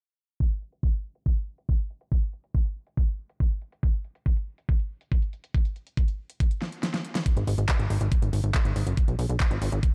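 A driving, psychedelic trance fragment opens at 0.4 s with a knocking, up-front electronic kick and an overdriven dance kit of huge snare, handclaps and metallic hats, all under a filter sweep that runs into a drum fill as the kick drops out at 6.8 s. At 7.4 s a punchy, funky analog bass enters, its saturated, wave-folded tone plucking with a fast attack and a decaying tail in the low register. The dark production keeps the sound dry and close.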